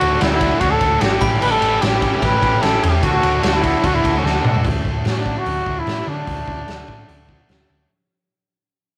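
A rough rehearsal-room sound with saturation and moderate reverb frames this jangly, upbeat indie rock fragment, led by an intimate, breathy trumpet melody with vibrato and scooped notes, set up front beside a raw garage drum kit with a fat snare and punchy kick. Two overdriven guitars, one biting and one semi-hollow, play a picked riff in the background over a round, dark hollow-body short-scale bass, while a swirling, phased string machine holds sustained chords and a sparkling glockenspiel with brass mallets adds a ringing second line, both very quiet. A drum fill at 4.2 seconds leads into a fade-out from 4.6 seconds, by which point the semi-hollow guitar, string machine and glockenspiel have stopped.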